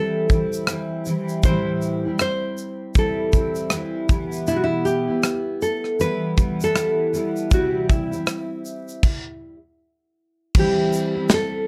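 A gently swung 79 BPM pulse in 4/4, carried by an up-front, small-room studio drum kit with a punchy kick, medium-tuned snare, rim click, shaker and crash, frames this tender, wistful acoustic pop excerpt: a deep classical nylon-string guitar, bathed in plate reverb, carries the fingerpicked melody over a full-bodied, double-tracked jumbo steel-string guitar through Am7, Em/B and C, all in a dark production, before a stop at 9.0 seconds and a return to Am7 at 10.5 seconds.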